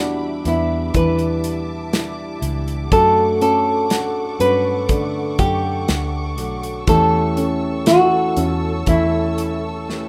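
A tender, emotional pop ballad in D major opens with a dark-toned flamenco guitar carrying the melody up front, fingerpicked between E4 and B4, over a polished, present grand piano accompaniment. A lush, bowed symphonic string section holds smooth chords with vibrato. A full-bodied jumbo steel-string acoustic guitar sits in the background, fingerpicking arpeggios, while a round, foam-muted electric bass gives an amped, punchy low end. At 0.5 seconds a natural country drum kit joins with hi-hat, a punchy kick and a medium-tuned snare, sitting up front in a small room, and a drum fill arrives at 9.9 seconds. At a slow 61 BPM in a straight 4/4, the harmony moves from Em7 to Dmaj7/F# to A7/E, with moderate studio reverb and a rough home-demo mix in this brief cut from a longer piece.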